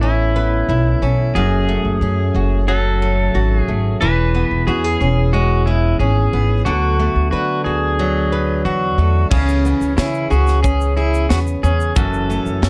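Acoustic pop at 90 BPM in a straight 4/4, carefree and heartfelt, this short excerpt from a longer piece has a dark, gently reverberant production. A woody, thumpy pizzicato upright bass sits up front, while a fingerpicked flamenco guitar carries the accompaniment and a full-bodied dreadnought steel-string acoustic guitar adds picked arpeggios. A clean, compressed pedal steel guitar, played with fingerpicks, slide and volume swells, traces a second line. The harmony moves from Aadd9 through F#madd9, E6 and D6 before turning to C#m7 and F#m7. At 9.3 seconds a polished, airy studio drum kit enters up front with a tight kick, high-tuned snare, shaker and crash cymbal, lifting the song into its next section.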